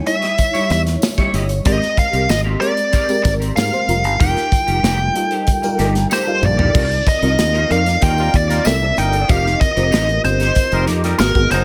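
A lush, dreamy FM electric piano with a soft pad layer opens this nocturnal, urban slice of polished 1980s jazz-funk pop, shimmering through phaser and ensemble chorus at a straight 94 BPM in 4/4. Almost at once a nasal, overdriven lead guitar with a parked wah takes the melody up front, while a clean, picked electric guitar plays a chorused riff in the background and a modern studio kit with a tight kick and medium-tuned snare drives the groove through gated reverb. A jingly, close tambourine joins softly behind, and a growly, bright fingered bass sits prominently in the mix from 0.7 seconds. The harmony moves through rich extended chords such as Eb7b9, Abmaj9 and F9sus4, and an electric piano fill and drum fill lead into a new section at 6.8 seconds built on Cm11. From 8.2 seconds a mellow horn section with light vibrato and a soft attack adds a vintage second line, all set in a small room with light reverb.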